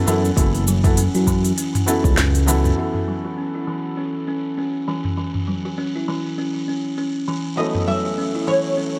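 Hypnotic and earthy, this short organic downtempo excerpt moves at 100 BPM in F# minor with a swung sixteenth feel, resting on an F#m7 chord as a felt-muted upright piano, soft and intimate with audible action noise, pumps under tape echo throughout while a buzzing kalimba, woody and hollow behind a low-pass filter, spins arpeggios up front. A deep plectrum-plucked oud with fretless double strings states the melody at the start and returns near 7.6 seconds, and a smooth, detuned sawtooth synth bass with vibrato and tube saturation pairs with a deep electronic kick only in the opening seconds. An afro-pop kit of cabasa, smooth hats, sharp snare and toms, all low-pass filtered, runs until 7.8 seconds, and from 2.8 seconds a filter sweep moves over both the drums and the kalimba inside a light, small-room reverb.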